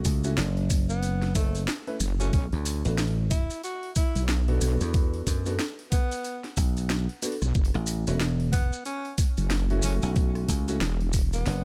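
Set in a digital ambience, this funky, gritty glitch hop excerpt moves at 92 BPM in 4/4 with a 60% swing on the sixteenths, sitting in B minor as the chords shift from F#m7 to Bm7 at 2.3 seconds and back to F#m7 at 7.5 seconds. An overdriven electronic kick knocks up front, joined by a layered drum and bass kit with a cracking snare, bright hats and rim clicks, plus grainy, band-limited maracas. The low end pairs a punchy, foam-muted thumbed slap bass carrying tube saturation with a heavy, detuned wobble bass given chorus that enters at 2.0 seconds. A clear concert grand piano, boxy and intimate with audible action noise, throws out stabs treated with sidechain pumping and delay. From 0.9 seconds a close-miked tenor saxophone takes the solo melody in jazz style, with light vibrato, scooped notes and a touch of delay, before a drum fill at 11.5 seconds closes the excerpt.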